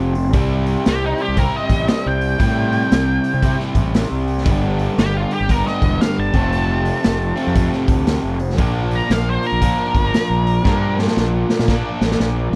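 An octave-fuzz lead guitar carries the melody from 0.9 to 11.0 seconds, its dark, distorted tone colored by wah and a slapback echo as it ranges from Eb4 to Bb5. This short cut from a longer piece is raunchy, driving blues rock and southern rock in a power-trio vein, at 116 BPM in 4/4 with a swung eighth-note feel, in C mixolydian, tuned to A4 = 444 Hz. Beneath it, a bright, overdriven semi-hollow guitar, picked and double-tracked, drives the riff up front, while a growly, fuzzed fingered electric bass adds overdrive and weight through the lowest register. A raw garage drum kit of kick, snare and hi-hat sits in a small, pumping room with a punchy kick, a medium-tuned snare and a gritty, saturated, rolled-off top, closing with a fill from 10.7 to 12.6 seconds. The chords move from C through G and F to Bb, and the whole passage sounds dry and close, with little reverb.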